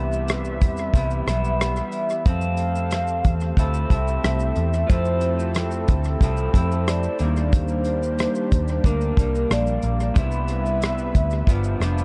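Low-reverb, echo-heavy cassette sound frames this laid-back, nostalgic indie and bedroom-pop cut at 91 BPM, where a hollow, woody clarinet-like synth lead carries the melody through phaser and tape echo over a slightly broken-up electric guitar with lush chorus and warbly pitch drift, a smooth analog pad sitting in the background, a round, foam-muted picked bass up front, and a damped 70s drum kit with tight kick, rim click, hi-hat and shaker roughened by 12-bit sampler grit, entering at 0.1 s, as the chords move from Cmaj7 through Fmaj7 and Ebmaj7 back to Cmaj7 and a closing G7.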